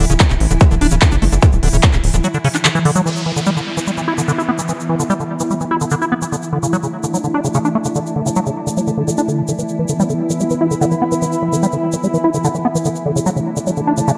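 This excerpt opens at full force: a psychedelic trance drop at 147 BPM in a straight 4/4, hypnotic and intense, with a punchy, up-front electronic kick, a big-room dance kit of handclaps and crisp hats, and a tight sequencer bass with a sawtooth, ring-modulated pluck and tube saturation. Alongside them a swarming drone of detuned, granular sines holds sustained chords with sidechain pumping, while a squelchy, resonant acid bass riff carries a filter sweep, chorus and digital delay. A grainy, bright tube shaker sits close and dry throughout. The kick drops out at 1.9 seconds and the kit and sequencer bass by about 3 seconds, when a downlifter slides in and a warbling, lo-fi tape-like pad of detuned sawtooth and triangle tones arrives at 3.4 seconds with chorus, reverb and pumping. From there the drone, acid riff, shaker and nostalgic pad carry the music as the harmony alternates between D and E, all in a light reverb.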